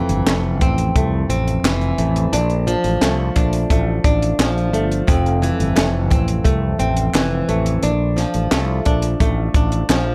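Nostalgic and sunny, this short indie and bedroom pop excerpt sways in a straight 4/4 as a boxy, fingerpicked flamenco guitar, bathed in lush chorus and a warbly pitch drift, alternates between Fmaj7 and Bbmaj7 chords. A growly fretless electric bass and a compact cocktail kit with a punchy kick, high-tuned snare and hi-hat sit up front with the guitar, while crisp group handclaps come in at 0.3 seconds in the background. The whole takes place in a small room ambience, with the drums sounding dark and smooth.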